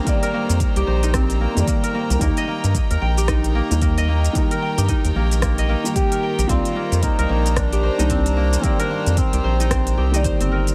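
Organic downtempo with a mystical, meditative mood and a swung sixteenth-note feel, cut from a longer piece: a boxy, felt-muted upright piano with tape echo and sidechain pumping sits in the background beside bright, earthy, bowed chamber strings that also pump, while a ringing, fingerpicked concert harp plays arpeggios through tape echo, a deep house kit of smooth hi-hats, rim click and shaker rides over a deep, layered electronic kick, and a round, dark, up-front analog bass carries tube saturation, until a distant, roomy duduk enters at 6.0 s with a scooped, folk-style melody under delay, the whole set in light studio reverb.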